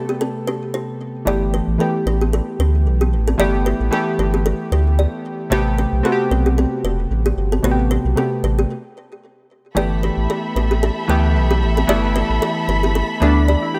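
Romantic and breezy, this afrobeats excerpt sways with a gentle swung sixteenth-note feel, as round, chorused analog keys carry the chords and a woody, hollow kalimba riff rings through a digital delay. A deep sine sub bass sits up front from 1.3 seconds. After a brief stop at 8.7 seconds, a dark, lush bowed string section with vibrato enters at 9.8 seconds, all set in light reverb and studio ambience.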